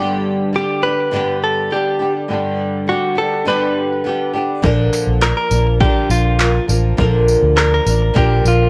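Acoustic pop with an easy-going, carefree mood, cut from a longer piece: a bright, fingerpicked flamenco guitar, double-tracked with audible finger squeak, carries the accompaniment from the start, and a clean, compressed electric guitar recorded direct plays the melody from 0.6 s, bathed in spring and plate reverb with delay. At 4.6 s a dark, round, foam-muted fingered electric bass arrives up front alongside overdriven 80s electronic pad drums with a punchy kick, tambourine and handclaps, and from 4.9 s a crisp, dry group handclap sits in the background. The whole recording has a worn, warbling old-cassette quality with drifting pitch and light reverb.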